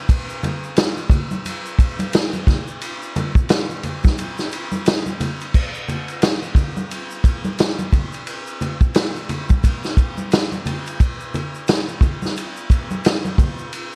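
A vintage acoustic drum kit sits up front in this cool, nocturnal hip hop excerpt at 88 BPM, its punchy kick, medium-tuned snare, hi-hat, ride and crash heard with dark cymbals and a rolled-off top, swung on the 16ths. A quieter tube shaker and ringing congas add a small-room percussion layer, both parts playing from 0.1 to 13.9 seconds. The dark, warm production carries vinyl crackle and a small room ambience, with a break from 4.2 to 5.5 seconds before the second section begins.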